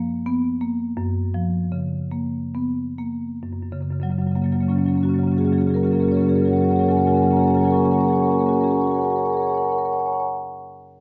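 A solo marimba played with medium hard mallets carries this playful, flowing contemporary classical piece, its woody, dark tone sitting up front and ranging from F#2 to C#6. In a rubato 6/8 at 44-58 BPM counted in dotted quarters, it opens on F#maj7 in F# major, tuned to A4 = 443 Hz, slowing down through the first 3.4 seconds before moving to F#add9 for the next passage. A wet recital hall reverb with a 1.3-second decay surrounds the percussive yet smooth strikes across this brief cut from a longer work.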